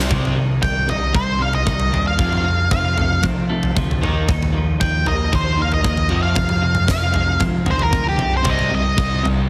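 Cathartic and dark, this short cut from a quiet-loud alternative rock piece centers on an up-front octave-fuzz lead guitar solo with analog delay that enters at 0.6 s over a huge arena drum kit with a punchy kick, a growly overdriven picked bass, a hollow-bodied overdriven semi-hollow guitar riff, twangy twelve-string electric guitar arpeggios with warbly pitch drift and analog delay, and a thick fuzz guitar riff that returns at 8.5 s, all set in light small-room reverb with a heavily compressed radio sound.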